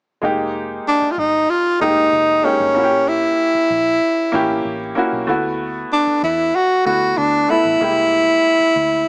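Lush 1970s-style soul at 95 BPM with a silky, bittersweet mood, where a breathy, close-miked tenor saxophone plays an up-front jazz-style solo with scooped notes from 0.9 seconds over a clear baby grand piano with short sustain and a dark, round, foam-muted vintage electric bass, moving through Fm11, A7b9, D6 and C7b13 with light reverb and a small speaker sound.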